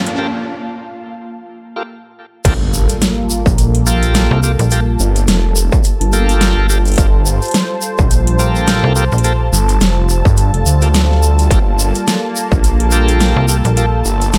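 A distorted, up-front electronic kick drives this swaggering, playful glitch hop excerpt in G minor at 106 BPM, swung on the sixteenths. It enters at 2.4 s alongside a grainy shaker, while a swirling, thick phased saw bass carries the drop from 2.5 s with a dubstep kit, heard from the opening, bringing a huge snare and metallic hats, and snappy FM bass hits arriving from 4.3 s. Above them, gritty overdriven organ stabs with slow rotary speaker and tape echo sit over a smooth analog pad and an ethereal airy pad, both pumping. These follow a build-up of riser and a drum fill on an opening Gm9, with an impact landing on the drop.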